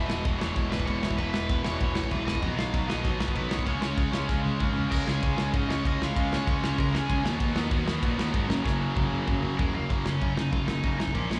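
Up front with a punchy kick and dark cymbals, a loose indie drum kit drives this upbeat, rebellious punk rock excerpt, rolling through fills at 4.3 and 8.6 seconds beneath a bright, overdriven cranked stack guitar melody with slapback and tape echo, a growly fuzz picked electric bass, and a backdrop of two distorted electric guitar riffs plus a double-tracked tight distorted guitar, heard live through the venue's PA with club reverb.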